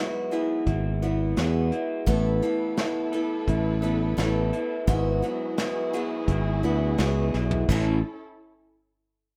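A straight 4/4 groove at 86 BPM carries this warm, hopeful folk rock and heartland rock excerpt, where a woody, boxy picked acoustic guitar and a slightly broken-up, lo-fi electric guitar riff open together, soft brush drums with dark cymbals come in at 0.3 seconds, a growly, up-front fingered bass joins at 0.7 seconds, and a dark chamber string section adds bowed sustained chords with expressive vibrato from 2.1 seconds over Eadd9/G# and Asus2 harmony, all in a rough home demo mix with little reverb, before a drum fill leads into a new section on A at 7.7 seconds.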